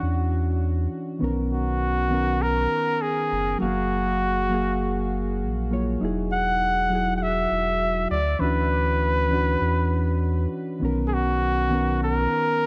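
Bathed in light reverb, this blissful, sunny sunset chillout excerpt at 100 BPM sets a clear, punchy flugelhorn melody with vibrato and digital delay up front over soft, round electric-piano-like synth keys with chorus and a filter sweep, and a deep, warm sine sub bass, all drifting through lush major-ninth chords from Dmaj9 to Bmaj9.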